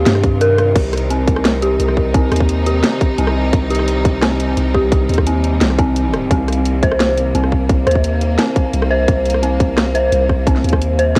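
Dark and heavy, this half-time drum and bass excerpt sits on a single C minor chord, where an eerie, warbling FM synth bell plays chorused, tape-echoed arpeggios over lush bowed strings holding sustained chords with sidechain pumping, a deep sine-like 808-style bass rumbles in long decaying notes, and an overdriven drum kit with a cracking snare, bright hi-hats, rim clicks and crashes is joined by a tight, up-front electronic kick, all captured dry as a home cassette recording.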